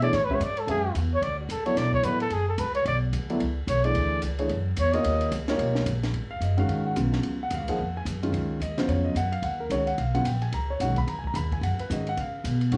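A light reverb gives this cut from a longer modal jazz piece the intimate feel of a small room, with trumpet, piano and bass all placed up front. The mood is searching and cool, moving at a brisk 219 BPM in 4/4 with a swung eighth-note feel, starting in B dorian over Bm11 and D#7 before shifting to G# dorian at 6.1 seconds, where G#7sus4 and C#13sus4 take over. A mellow trumpet carries the melody as a solo in jazz style, its soft attack, light vibrato and scooped notes ranging from F#4 to D#5 until it falls away at 5.3 seconds. A dark grand piano with short sustain supplies the accompaniment throughout, while a woody, thumpy pizzicato upright bass on steel strings anchors the low end. Sitting further back, a compact cocktail drum kit plays hi-hat, ride, punchy kick and a high-tuned snare, its smooth, rolled-off top and dusky cymbals keeping the groove understated.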